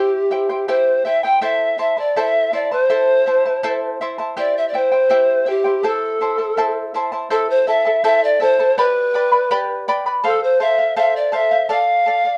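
Wistful and melancholic, this brief Andean folk passage in A minor moves at 82 BPM in a straight 2/4, with an airy wooden pan flute carrying the melody, its tongued notes and vibrato set in plate reverb and sitting forward in the blend. A bright, fingerpicked charango accompanies throughout, its double strings shimmering with some octave doubling, as the harmony rocks between C and Am before shifting at 8.8 seconds through G and F to Dm. The dark production sits in a modest small-room ambience that lends the ensemble a warm sound.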